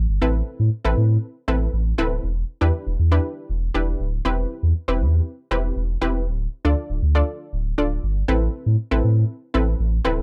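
A round, sine-toned sub bass sits up front from the start of this confident, driving dance-pop passage at 119 BPM in A minor, joined at 0.2 seconds by a bright, punchy sawtooth pluck with a detuned unison shimmer, noise layer and sub-octave weight, cycling through Amadd9, Em7, Cmaj7/E and Dm in a dry, close 1970s-style studio sound cut from a longer piece.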